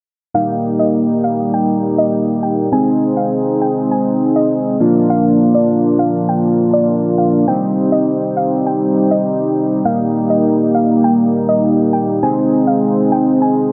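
Carefree and euphoric, this pop excerpt in straight 4/4 layers a retro, glossy chorused polysynth playing up-front accompaniment over a smooth, detuned soft supersaw holding sustained chords, while a gentle, round pluck carries the melody through chorus and dub echo, all bathed in a lush hall reverb with a dark, low-passed production as the chords move from Eb through Ab, Bb and Cm.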